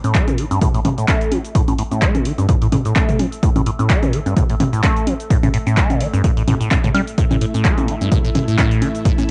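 Acid house at 128 BPM in 4/4 with a light 16th-note swing, driving and trippy, cut from a longer piece and built on an A5 chord. A squelchy, resonant sawtooth acid bass sits up front with a riff between G2 and A3, its filter sweeping while phaser and tape echo smear each decaying note. A punchy electronic kick and an analog drum machine of congas, handclaps, hi-hat, shaker, toms and woodblock sit close and tape-saturated, sounding as if re-recorded in a small room. Behind them, a warbling, detuned square-and-triangle pad with ring modulation fades in across the whole 9.3 seconds, dark and nostalgic, pumping under sidechain with chorus and reverb. At 7.2 seconds a lush vintage string machine enters with bright, sustained ensemble chords in the background, also pumping. The whole has the lo-fi, muffled top end of a home cassette recording with light reverb.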